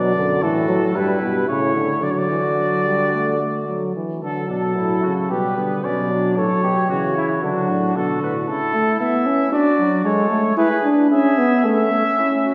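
A mellow cornet with light vibrato carries the melody up front in this lively, joyful excerpt of a classical imitative canzona for brass ensemble, alongside a distant flugelhorn on the second line, a close-miked euphonium with gentle vibrato supplying accompaniment, and a vintage-toned bass trombone holding the low end until 8.5 seconds, all set in a resonant concert hall.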